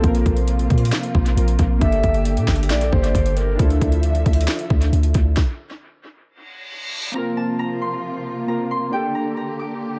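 A melancholic, brooding trap excerpt at 135 BPM in a half-time feel opens on a hard-clipped kick, sharp snare, metallic hats and handclaps with dub echo, a deep, boomy 808-style bass, warbling lo-fi synth keys with chorus, veiled con sordino strings holding lush chords, and a breathy, flute-like synth lead that drifts through a brief second line with chorus and dub echo. The bass drops out at 5.4 seconds and the drums a moment later, leaving the keys and strings to hang over a reverse cymbal that rises into a new section. At 7.2 seconds a ringing, fingerpicked Celtic harp takes the melody up front, its dub echo feeding an echo-heavy mix with light reverb and digital ambience.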